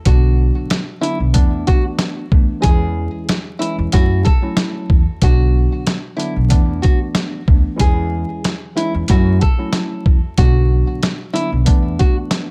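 A gritty, compressed boom-bap drum kit sits up front from the very start, its thumpy kick, medium-tuned snare and hi-hat pitched down and tape-warm, setting a reflective yet tough hip hop mood. Underneath, a woody, growly upright bass is plucked low, while a worn, slightly out-of-tune tine electric piano carries the chords through a cassette-tape haze and filtering. A full-bodied, fingerpicked nylon-string guitar with a deep classical character plays the melody high above, softened by filters and trailed by delay. The harmony circles from Bm through E7sus4, C#m/E and F#m7, then returns to Bm before closing on E7sus4 near 11.7 seconds. A small room reverb, a dark, warm production and a bed of vinyl crackle give this short fragment of a longer piece its dusty, intimate feel.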